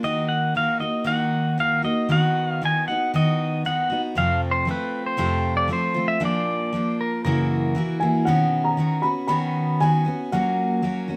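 A clean, compressed pedal steel guitar with volume swells takes a solo over bright, full-bodied picked steel-string acoustic guitar with audible finger squeak in this reflective, intimate acoustic folk excerpt at 117 BPM in Eb harmonic minor, until a woody upright piano carries the melody from 8.0 seconds within a wet studio reverb.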